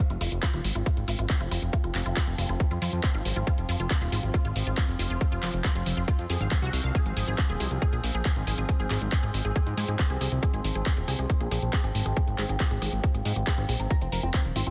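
A punchy, detuned unison pluck riff with dub echo opens this intense psychedelic trance excerpt at 0.1 s, alongside a fat analog sawtooth bass and a drum kit of bright, overdriven handclaps and hi-hats. A tight, overdriven electronic kick sits up front in a straight 138 BPM groove in F minor, while a resonant drone with moving overtones sustains chords beneath, the harmony shifting from F5 to Ab5 at 6.9 s, with the pluck and drone pumping to the sidechain. At 13.9 s a gritty, screaming synth lead with distortion, phaser and digital delay breaks in, all within a dense, heavily limited modern master carrying light reverb.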